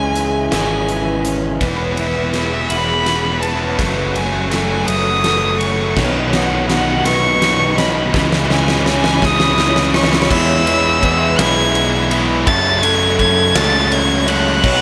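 Moving in a slow, straight 6/8 lilt, this cinematic, hopeful post-rock passage, cut from a longer piece, builds from 1.6 to 10.3 seconds under an extended drum fill from a huge arena kit with a fat snare, punchy kick and bright cymbals ringing in a hall. A rich, smooth bowed violin carries the melody high above, its vibrato even and touched with slapback echo. Beneath it, a very quiet sweeping pad of detuned sawtooth and ring-modulated tones holds evolving, resonant chords. A mellow vibraphone with soft mallets ripples arpeggios in the background with its own slapback echo, while a twangy, clean twelve-string electric guitar picks faint arpeggios until 10.3 seconds. A crunchy overdriven guitar with spring reverb and a thick fuzz guitar churn out background riffs, as a bright, direct picked electric bass anchors the low end under chords that circle through C#madd9, E6, F#madd9 and Badd9 before settling on F#m.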